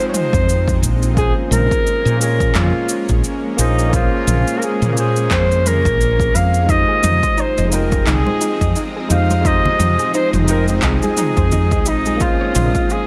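Wistful and relaxed, this sunset chillout passage in F minor moves at 87 BPM with a swung sixteenth-note feel, cut from a longer piece and circling between Fm7 and Bbm7. A mellow, distant flugelhorn carries the melody up front with light vibrato and tape echo, over a barky, gritty tine electric piano pushed through a combo amp. A shimmering, ethereal pad with octave-up sparkle, chorus and vintage 12-bit sampler grit sustains the chords in the background, while a dark, round fretless bass with subtle chorus sits up front from 0.3 seconds. The overdriven deep house kit of cabasa, handclaps and toms comes in at 0.1 seconds, and a punchy, layered electronic kick follows at 0.3 seconds. At 6.7 seconds a soft, detuned pluck adds arpeggios with chorus and tape echo, and from 7.9 seconds a very quiet, breathy wind-like noise texture and close, dry bongos and congas played with hard hands enter, all under light digital ambience.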